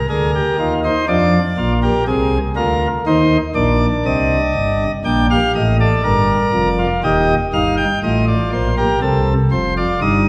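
Classical baroque-style three-part fugue in C minor at a slow 60 BPM in 4/4, contemplative and serious, played by a solo chamber organ whose full principal chorus, with chiff and a chamber voicing, sits up front across a span from Eb1 to G5, tuned to A4 = 445 Hz, moving through harmonies such as Ab, Dm7b5, Cm, Gm and Eb, and wrapped in a wet scoring-stage reverb that places the listener further back in the room in this brief cut from a longer piece.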